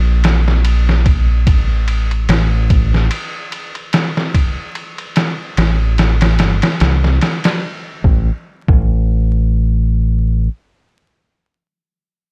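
A round, punchy dub bass, dark and up front, holds the low end from 0.0 to 10.5 seconds in this hypnotic trip hop fragment at 73 BPM in A phrygian with a light sixteenth-note swing, while a compressed, pitched-down sampler-style kit of thumpy kick, medium-tuned snare and ride sits muffled but close from 0.2 to 8.9 seconds, all wrapped in vinyl crackle and a dry, nearly reverb-free sound.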